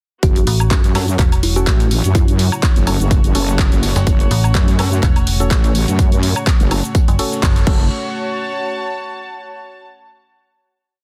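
This is a swaggering, aggressive bass house piece at 125 BPM in F# minor, with a swung 16th-note feel. A punchy, overdriven electronic kick drives a four-on-the-floor pulse up front from 0.2 seconds. A house drum kit adds tape-warm hats, claps, shaker, woodblock and crash, and a very quiet, gritty, pitched-up breakbeat loop with edits sits beneath it. Two basses dominate the low end: a heavy, detuned sawtooth wobble bass with changing wobble speed and sidechain pumping, and a metallic FM bass playing chopped phrases through tube saturation. Higher up, a woody kalimba plays short phrases in the background until 2.6 seconds. A hollow, percussive organ stab adds syncopated chords through cassette tape character, chorus and delay. A deep, moody analog pad holds sustained chords, while a distant, reedy bowed string section supplies slowly shifting chords, and the strings carry the final note alone until 9.8 seconds. 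The drop hits a full-band accent at 7.4 seconds, and the dense, heavily limited master is set in a digital ambience.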